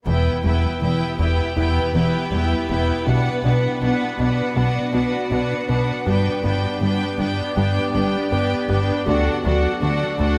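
A cinematic hybrid orchestral and electronic film score excerpt in E minor at 80 BPM, relentless and brooding, where a round, deep analog bass riff sits beneath a clear, focused violin second line, lush viola accompaniment, background cellos and double basses, a very quiet tight sequenced synth arpeggio, and an evolving, morphing wavetable pad with chorus that enters at 1.1 seconds, all moving through Em, Bm, G and D in a wet concert hall.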